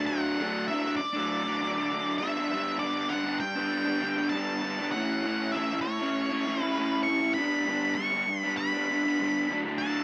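A swaggering, rowdy rock excerpt opens with a raw, lo-fi, double-tracked overdriven garage guitar picking a riff over D, G and A chords, while an up-front, dark octave-fuzz lead guitar carries the high melody through light digital reverb.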